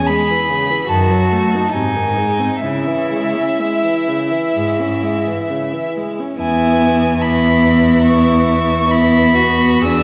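Heard from further back in a reverberant recital hall, this solemn, elegiac slow romantic movement for string quartet unfolds in a rubato 4/4 at 61-74 BPM, shifting from C# minor to E major at 6.4 s, as an up-front first violin sings the high melody with vibrato, portamento and a soft attack over a smooth, even second violin line, a focused viola accompaniment and a clear, distant cello bass that enters at 0.9 s.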